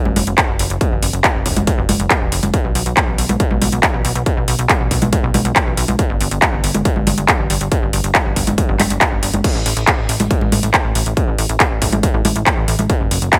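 Uplifting trance at 139 BPM in a straight 4/4, with a soaring, uplifting mood, cut from a longer piece. A distorted, layered electronic kick joins up front at 0.4 seconds, adding to a produced techno kit of congas, handclaps, crash cymbal and metallic hi-hats that is already playing. Beneath them a punchy, funky analog bass with a fast-attack filter pluck and wave-folded sawtooth, square and sine tones pumps from the sidechain between E1 and B1, all set in a digital ambience.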